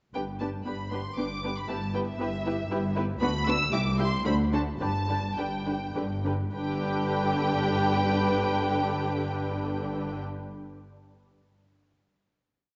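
A wet concert hall reverb surrounds this short, complete classical-period piece for muted string orchestra, its sound soft and veiled with little brightness at the top. In a cheerful, graceful 3/4 in G major, moving at a quick 101-118 BPM, the muted first violins carry the melody up front and close, their con sordino tone dark and lush with vibrato and a soft attack. Beneath them a second violin line and a more distant viola section play repeated notes and sustained chords, while the cellos, smooth-topped with light vibrato, mark the bass on the beats and hold sustained bass notes, doubled by the double basses. The harmony moves from G through Em/G, Bm/D and C, and the tempo slows from 2.4 to 6.5 seconds, with a brief break in the harmony before a return to G. From 6.5 seconds the ensemble settles onto a final chord that rings out until about 10.1 seconds.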